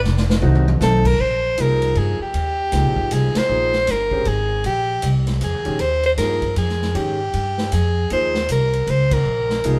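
A swinging jazz waltz in three opens with a drum fill on a distant, roomy kit with a punchy kick, while a woody, thumpy pizzicato upright bass sits up front. An intimate grand piano with audible action noise and long sustain comps over cool, suspended modal chords. From 0.8 seconds a clear soprano saxophone takes the intense lead with vibrato and a soft subtone attack, and the band hits an accent at 3.3 seconds, all in a moderate stone room as part of a longer performance.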